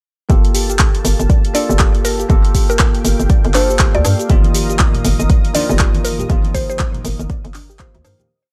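Deep house with a warm, late-night mood, driven by an up-front four-on-the-floor kick and a dry, overdriven analog drum machine playing cabasa, handclaps and hi-hats over a hollow, bouncy FM bass riff, all in a drop that fades out from 5.6 seconds. Bell-like tine electric piano stabs move one chord shape in parallel over Gm9 and Ebsus2/G, while a soft, round pluck repeats a 16-step arpeggio with tape echo and a detuned sawtooth pad sits in the background, both pumping against the kick. A woody, mallet-like synth pluck with phaser plays short answering phrases from 1.5 seconds, and compressed, saturated congas join in the background at 4.4 seconds, the whole mix sounding dry and gritty.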